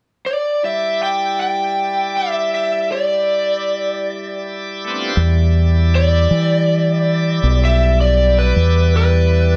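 Bathed in light reverb, this smoky, soulful slow blues excerpt in E minor moves at 53 BPM in 12/8, with a dark, overdriven lead guitar picking an up-front melody from 0.3 seconds, a bright, shouting tonewheel organ with key click and slow rotary speaker holding an Em7 chord from 0.6 seconds, and a round, deep dub fingered bass entering at 5.2 seconds as the guitar takes its solo.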